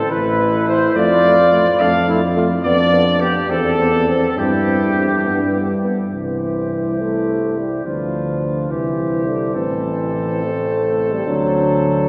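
A brass quintet opens together in 6/8. A mellow cornet with vibrato carries the melody while a clear trumpet with light vibrato traces a second line close beneath it, both sounding distant and roomy. A trombone with light vibrato and a French horn, both with a vintage character, fill out the accompaniment, and a warm tuba with light vibrato anchors the bass. The mood is triumphant and noble in a classical style, with the harmony moving from Am through Dm/F, G7/F and C/E to a G chord. At 6.1 s a second section begins on C and winds through Bdim/D and Am to a D7 at 11.3 s. A wet cathedral reverb with a 5.1-second decay places the ensemble further back in the room, and the passage is cut from a longer piece.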